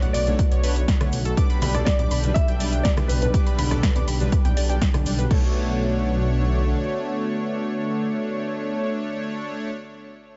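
A straight 4/4 pulse at 122 BPM drives this progressive house excerpt in B minor, its mood expansive and emotional. It opens in the drop, where a punchy, overdriven electronic kick from 0.4 s sits up front alongside a house kit of crash, hi-hat, rim click and snare, with very quiet ringing congas and a grainy egg shaker adding texture. Underneath, a deep, rumbling detuned saw bass holds B1 with tube saturation and sidechain pumping, while a smooth analog pad with chorus and a full-bodied supersaw playing stabs with delay carry the Bm9 and G/B harmony. A dark, mellow grand piano with vintage 12-bit sampler grit and delay carries the melody in the background, joined by a very quiet, pure FM synth bell on a second line, as a round, warbling analog pluck spins arpeggios through chorus and delay. The drums and percussion drop out around 5.4 s, and the bass fades by 6.7 s, as the pad and supersaw sustain the return to Bm9 in a dry mix with a rolled-off top end.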